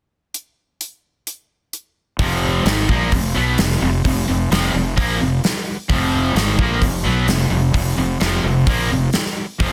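A gated 80s drum kit sits up front in this aggressive, driving hard rock excerpt, playing alone from 0.3 seconds with a tight kick, a medium-tuned snare, hi-hat and an airy, polished gated-room sound. At 2.2 seconds the band enters on an F minor chord, moving at 130 BPM in a straight 4/4. Two picked electric guitars play the riff between F2 and B3: one distorted and compressed, set in the background, the other bright and overdriven. A fingered electric bass, also up front, covers the low end from F1 to B1 with a growly, punchy fuzz tone, and the full band carries on to 9.7 seconds. The mix has a small room ambience and a dense, heavily limited modern master.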